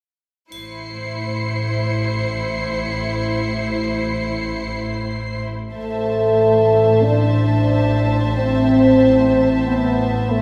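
A mellow French horn section enters at 5.7 s with sustained chords, sounding distant yet up front, as this ominous, eerie suspense cue in A minor drifts in free time within a reverberant hall. Beneath it, veiled con sordino strings hold the ground: a muted violin section carries a second line, and a dark muted cello section and a lush double bass section anchor the A minor bass with soft-attack vibrato. A high violin texture shimmers from 0.5 s until 5.4 s alongside a brief, bright triangle in the background, before a quiet muted violin melody on a high A takes over beside the horns until 10.4 s.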